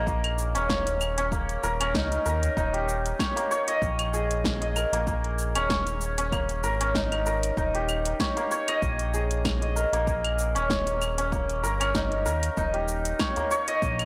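The recording is dry and gritty, with transformer saturation colouring a hardware-driven sound. This mystical, hypnotic organic downtempo piece with a light swing is cut from a longer work. Up front, a shimmering, hammered santur rings out in arpeggios from start to finish, carried by tape echo. Beneath it, a smooth, gliding synth bass blends sawtooth and square waves into a dark, sustained low end with portamento and tube saturation. An overdriven deep house kit with a punchy snare, metallic hi-hats, cabasa and claves sits alongside a deep, layered electronic kick, both re-recorded in a large room. A small acoustic udu adds touches from the background, first between 0.9 and 2.5 seconds and again briefly near 13.4 seconds.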